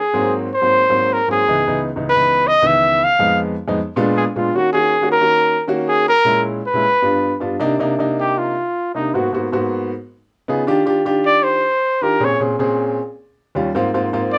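In a moderately roomy studio sound, this driving, fiery jazz piece cut from a longer work moves at 156 BPM in a straight 4/4, with an up-front mellow, breathy trumpet carrying the melody in scooped notes with a smooth top over a natural-sounding baby grand piano whose short-sustained accompaniment supports it, starting in G# minor before shifting to C minor at 7.6 s, where the trumpet takes a solo through to 14.4 s.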